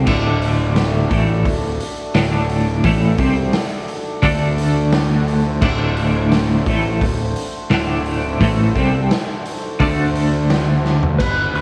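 Twelve-string electric guitar leads this hypnotic, hazy psychedelic rock excerpt, its bright, clean, twangy riff double-tracked and shimmering with tremolo up front in the mix. Set at 86 BPM in a straight 4/4 and rooted on a D chord in D mixolydian, the groove rests on a fuzz picked electric bass that is round, punchy and overdriven, sitting low beneath the guitar. A raw garage drum kit, recorded in a bright stone room yet dark and smooth with a rolled-off top, drives along with a punchy kick, a medium-tuned snare, hi-hat, crash cymbal and toms, closing the passage with a fill from 10.8 to 11.2 seconds. Behind it all, a pedal harmonium breathes reedy, mellow sustained chords in the background. At 11.2 seconds the twelve-string and harmonium stop, and a lightly driven lead guitar, slightly broken-up and twangy through a wah, enters on a single B4 as the clip cuts off, with a moderate echo-chamber reverb lending the whole mix a spacious haze.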